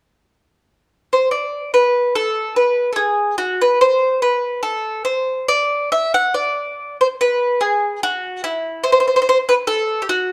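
This Italian folk piece, cut from a longer work, has a romantic yet lively mood in a lilting 3/4, with a swung eighth-note feel and a rubato pulse. A solo bowl-back mandolin carries everything, entering at 1.1 s and playing on until 10.3 s. Its picked, double-strung acoustic tone sits up front and stays within a compact range from E4 to F#5. The playing moves into a new passage at 6.4 s, and the instrument is tuned slightly low, with A4 at 437 Hz. A moderate recital-hall reverb and a dark, warm production give the mandolin an intimate glow.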